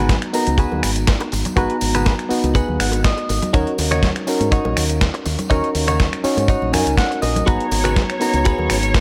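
Over a lightly swung 4/4 groove, with a tight, dry kick up front and a gritty, overdriven sampler-style kit of finger snaps, hi-hat and snare, plus soft-handed congas, tambourine and bongos in the background, this sleek, cosmic nu-disco excerpt sets a reedy electric piano with 12-bit sampler grit and tape echo against a twangy, picked clean electric guitar riff with chorus and echo that adds fills at 2.6 and 6.5 seconds, all anchored by a warm, envelope-filtered fingered bass, before a lush, sawtooth string machine enters at 7.5 seconds with slow-attack sustained chords and sidechain pumping, the whole mix soaked in a dreamy hall reverb.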